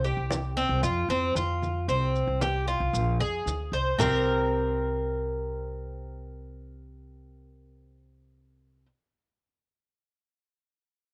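Latin Cuban son and guajira with a danceable, nostalgic mood, this short excerpt from a longer piece is led up front by a bright, metallic Cuban tres picking arpeggios on double strings, some doubled at the octave, colored by a cassette tape effect. A woody, dark, thumpy pizzicato upright bass on gut strings sits close beneath it, while soft-handed, low-tuned congas and grainy, mellow maracas play together until about 4.1 seconds and then drop away. The home cassette recording carries light reverb and studio ambience.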